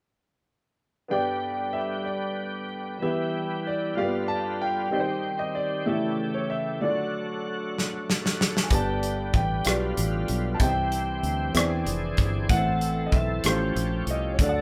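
Slow gospel in 6/8, soulful and jubilant, with an intimate grand piano carrying the melody over a woody, slightly detuned upright piano and a shouting tonewheel organ with key click, slow rotary speaker and light overdrive holding chords; drums enter with a fill at 7.8 seconds and a punchy, foam-muted fingered electric bass joins at 8.7 seconds, all captured as a band playing live in one room.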